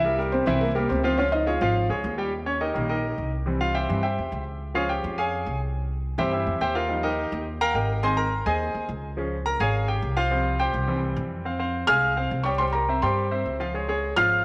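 A fiery, driving salsa excerpt at 210 BPM opens with a soft, felt-muted upright piano carrying the melody, its mellow, intimate tone and audible action noise set up front over a bright concert grand piano and a woody, dark pizzicato upright bass. At 2.3 seconds the grand takes a solo, its brilliant, polished attack and short sustain ringing over chords that move through Eb, Db, Ebadd9 and Csus4, before the muted piano returns with the melody at 11.9 seconds. A moderate plate reverb gives the close, present sound a lingering tail through to the cut at 14.4 seconds.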